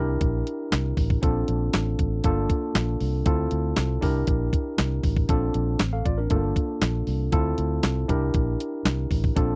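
A worn, slightly out-of-tune tine electric piano, lightly overdriven through a combo amp, opens this slick, danceable early-eighties boogie funk passage alongside a dark, foam-muted fingered electric bass with a round, punchy, amped tone, cycling through C9, Bbmaj7, Gm7 and Dm9. A clean 12-bit drum machine joins at 0.2 seconds with a thumpy kick, fat snare, hi-hat and handclaps, its sampler-style sound carrying a tape-like glow. All three parts sit up front in a dry, close, 1970s-style studio recording cut from a longer piece.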